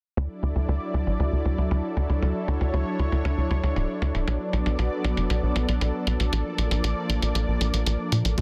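A tight, punchy, nasal sawtooth sequencer bass with a filter pluck and fast attack drives this romantic, uplifting synthwave excerpt at 117 BPM in D major, moving through a filter sweep and sidechain pumping beneath a lush, warbling unison pad of detuned sustained chords with chorus and vintage 12-bit sampler grit over Dadd9, Bm7 and Bbmaj7, while a low-passed, sampler-style electronic hi-hat plays under its own filter sweep in light digital ambience until a thumpy electronic kick drum lands up front at 8.4 s, the whole mix sealed in a dense, heavily limited modern master.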